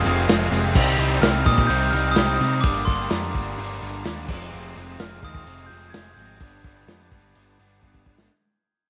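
A cool, bittersweet indie rock passage opens with a ringing glockenspiel melody played with soft plastic mallets, its bell-like tone carried by a slapback echo, over a fat tonewheel organ holding sustained chords through a slow rotary speaker in the background. Two bright, overdriven, picked electric guitars also sit in the background playing riffs: one crunchy and bathed in spring reverb, the other thickened with ensemble chorus and slapback echo. Up front, a growling, round, overdriven bass anchors the low end, joined at 0.1 seconds by a lo-fi vintage acoustic kit with a muffled, rolled-off top, dark cymbals, a medium-tuned snare and a tight kick in a small room. At a straight 127 BPM in 4/4, the harmony moves from Fm through Cm and Gm, back to Fm, and lands on a G major chord. The passage fades out throughout, and after the glockenspiel stops at 7.8 seconds, a drum fill closes the excerpt.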